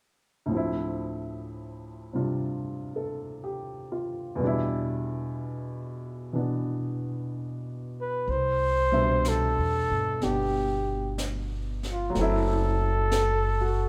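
Romantic and late-night in mood, this slow jazz ballad at 62 BPM in C major swings gently, opening at 0.5 s with an up-front baby grand piano alone, its open, short-sustained voicings moving from Dm9 to Em7. A mellow flugelhorn takes the solo melody at 8.0 s with light vibrato and a smooth top, and at 8.3 s a woody, thumpy, plucked gut-string upright bass and a soft brush kit with a high-tuned snare and hi-hat join as the harmony shifts to Cmaj9 and then F#m7b5. A moderate recital-hall reverb gives this excerpt, cut from a longer piece, the feel of a church or concert hall.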